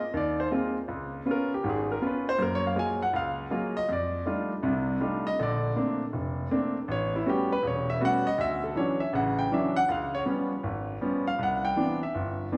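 A clear concert grand piano carries this solo jazz fragment on its own from 0.0 to 12.6 s, sounding natural and up front with a deep bass that reaches down to E1 and climbs as high as Ab5. The mood is sophisticated and playful, set at a brisk 160 BPM in 4/4 with a swung eighth-note feel. The harmony moves through rich extended chords such as Ab69, Gbmaj9 and A13 before settling into D major at 8.4 s, where a second pass of the opening material begins with Dmaj9, C#7#11 and Cmaj9. A moderate concert hall reverb with a 2.3-second decay surrounds the instrument, blended with a touch of small room ambience. The passage is cut from a longer piece and stops at 12.6 s.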